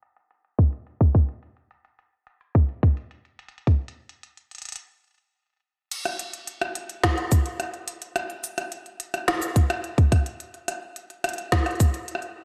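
Filtered and lightly reverberant, this cerebral, glitchy IDM fragment, cut from a longer piece, moves at 107 BPM in a straight 4/4 and places its drums up front in a large-room sound. An organic electronic kit of woody snare, crisp hi-hats, rim click, shaker and crash cymbal, each dulled by low-pass filtering, opens the recording, and a louder, tight electronic kick joins at 0.6 seconds. A filter sweep runs through the opening stretch, broken by a stop at 4.8 seconds, before the second section begins at 5.9 seconds.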